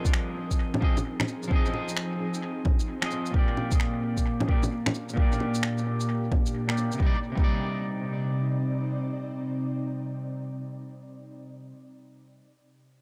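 A deep, tape-warm electronic kick sits up front in this nocturnal, wistful future garage excerpt at 131 BPM in C minor, with a swung feel, joined by an overdriven, layered bed of electronic shaker, finger snaps and bongos that drops out at 7.0 seconds, the kick following at 7.5 seconds. A slightly broken-up, twangy electric guitar, played with the fingers, carries the accompaniment through sidechain pumping, a low-pass filter and analog delay, with a filter sweep over its opening stretch. Beneath it, an ethereal, airy pad of detuned sawtooth and triangle layers with a noise layer and ensemble chorus sustains mellow chords from Fm7 to Bb6 to Cmadd9, all in a light, echo-heavy mix.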